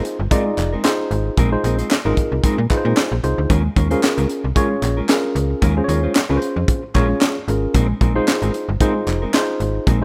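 Early-eighties boogie funk with a smooth, feel-good mood and a light swing on the sixteenths, cut from a longer piece. Up front, a worn, slightly out-of-tune tine electric piano played through a combo amp sits with a snappy, metallic slap-like FM bass and a tight acoustic drum kit with a high-tuned snare and a pumping small-room sound. A dark, fingered electric guitar riff with subtle chorus and very quiet, crisp group handclaps from 0.6 seconds fill in behind, while the harmony moves between Bb9sus4 and Eb9sus4 in a rough home-demo mix with light studio reverb.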